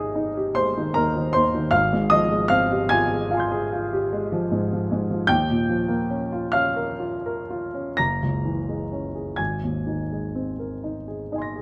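A grand piano opens alone on an Abmaj7 chord, setting a dreamy, luminous mood in this short passage of impressionist classical solo piano. The playing moves in a slow, rubato 9/8 at roughly 39-53 BPM counted in dotted quarters, with the pulse stretching freely in Ab major. The instrument has a smooth, vintage character and a short sustain, and it sits up front, spanning a range from Gb1 up to Bb6. The harmony drifts through colorful extended chords, passing from Fmadd9/Ab to Eb9 at 5.3 seconds and Gb9 at 8.0 seconds before settling on Abadd9 at 9.4 seconds. Close, detailed microphones and a light touch of reverb give the sound an intimate, glowing presence across its 11.6 seconds.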